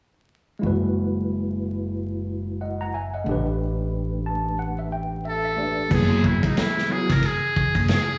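A buzzy, breathy trumpet with a metal mute carries the melody from 5.3 seconds, adding light vibrato, scooped notes and a slapback echo, in this smooth, relaxed jazz-hop excerpt at 91 BPM with a swung feel. A worn, slightly out-of-tune tine electric piano, also echoed, lays down mellow chords and a fill, and a woody, thumpy pizzicato upright bass holds the low end before a gritty vintage drum kit with dark cymbals enters at 5.9 seconds. The whole piece sounds like a live club gig heard through the venue's PA, with vinyl crackle on top.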